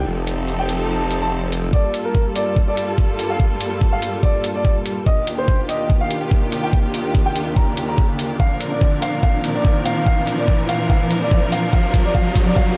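Set in a half-time 4/4 at 144 BPM with a light 16th-note swing, this heavy, chaotic wobble dubstep piece in G minor is cut from a longer work and, after a short opening section, turns into one long build-up. It opens on a sawtooth-and-sine wobble bass holding a low F1, formant-filtered, compressed, overdriven and thickened with chorus, which sits up front before dropping out at 1.7 s as a layered, knocking electronic kick takes over the foreground and drives the rest of the clip. A rich, bowed studio string section sustains chords throughout, its smooth top and vibrato pumping against the sidechain. Above it, a boxy concert grand piano with deep bass and long sustain carries the melody through low-pass filtering and dub echo, and a filter sweep runs across it during the build-up. An electronic hi-hat re-recorded in a large room ticks along, an electronic riser enters at 4.4 s, and a drum fill starts at 8.4 s as the harmony moves from Gm7 through Ebmaj7 and Bbadd9 to Cm7, all in a dry, close space.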